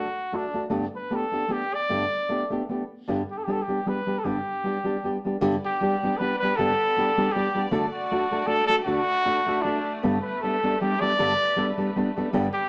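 Opening on a present, classical-style solo trumpet carrying the melody up front over a full-bodied, thumb-plucked nylon-string guitar, this romantic, festive mariachi excerpt in G major swings gently at 155 BPM in 3/4, with a veiled, con sordino violin section entering at 5.4 seconds to hold dark, softly vibrato-tinged chords in the background of a studio reverb as the harmony moves among D, Gadd9 and G.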